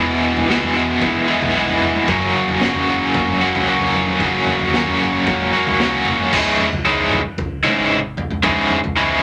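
Psychedelic rock with a trippy, mysterious mood, built on a bright, overdriven guitar riff that is double-tracked and up front, colored by tremolo as it moves from E to F# and then settles on C#m at 6.3 seconds. Beneath it, a round, dark fingered electric bass sits in the background, while an acoustic drum kit enters at 0.4 seconds with a punchy kick, gritty saturation, dark cymbals and a pumping small-room sound. The whole fragment, cut from a longer piece, sits in a moderate club reverb.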